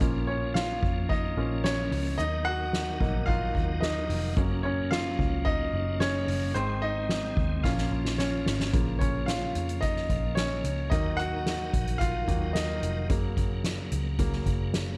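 A straight 4/4 pulse at 110 BPM drives this bittersweet, forward-leaning piano pop excerpt in Bb minor, cut from a longer piece. A soft-mallet drum kit sits up front with a boomy kick, fat snare, dark cymbals on hi-hat and ride, and a fill from 7.6 to 8.7 seconds that carries the music into its second section. A vintage muted picked electric bass holds the low end with a round, punchy, foam-muted tone. A clear, polished baby grand piano provides the accompaniment and takes solo passages across both sections, while a piping tonewheel organ sustains chords further back, lightly overdriven with chorus vibrato, key click and a fast rotary speaker. The harmony moves through Bbm, Ebm, Gb and Ab before circling back, all set in a light, small-room reverb.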